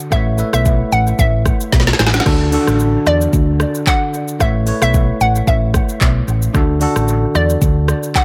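Romantic and joyful, this short afrobeats clip cut from a longer piece moves at 112 BPM in 4/4 with a gentle 16th-note swing, sitting in D major over a simple cycle of Aadd9 and D. A hollow, bouncy square-wave pluck carries the melody, its detuned, ring-modulated tone shaped by a filter sweep, fast attack and decaying notes, and thickened with chorus and dub echo. Beneath it, a bell-like tine electric piano plays clean, direct accompaniment across a broad register. The hollow-body short-scale electric bass is dark, round and punchy, with an amped character. The produced electronic afro-pop kit is up front, with a deep kick, woody snare, metallic hats, rim click, shaker, handclaps and crash cymbal, its hits trailed by dub echo and a drum fill between 1.7 and 2.3 seconds. Light reverb and an echo-heavy mix give the whole clip a spacious, airy feel.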